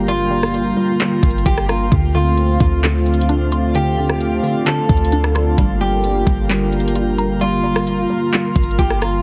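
Atmospheric cloud-rap hip hop at 131 BPM in a half-time 4/4 feel, hazy and melancholic, moving from Gm7 to Dm7 at 1.9 seconds and back to Gm7 at 5.6 seconds in this short excerpt cut from a longer piece. A dark, moody analog pad of detuned sawtooth and triangle layers with a sub octave holds sustained chords up front, its slow attack and long release treated with chorus and sidechain pumping. Beneath it, a clean, boomy 808-style bass built on a sine tone hits with a fast attack and decays, while a trap kit of knocking kick, crisp hi-hats, handclaps and rim clicks sits forward from 0.1 seconds. A hollow, bouncy square-wave pluck with a noise layer plays arpeggios in the background through chorus, a low-pass filter and tape echo, and a faint twinkling granular texture adds an octave-up FM shimmer bathed in its own reverb. From 0.1 seconds a fingered electric guitar, dark and slightly broken-up, carries the melody through a low-pass filter and tape echo, and the whole mix has a dry, heavily compressed radio sound.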